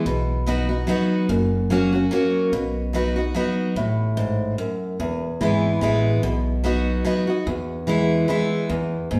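Joyful and driving, this bluegrass piece in E major swings along at 146 BPM in 3/4, cut from a longer piece. A bright, full-bodied dreadnought acoustic guitar sits up front, picked as accompaniment with audible finger squeak, while a woody pizzicato upright bass enters at 0.1 seconds to anchor the low end. The chords move through B, F#, F#madd9/A and E, and the band plays live in one room wrapped in a lush large-studio reverb.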